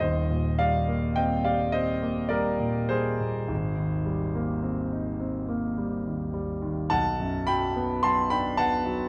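In a slow, rubato 3/4 at 53 BPM, this dreamy, luminous fragment of impressionist classical solo piano drifts from Eb6 to Abmaj9 at 3.5 seconds and on to Bm7 at 6.9 seconds. The grand piano, tuned to A4 = 442 Hz, is warm, present and polished, sitting up front and spanning Eb1 to C6. A moderate recital-hall reverb and a dark, warm production surround it.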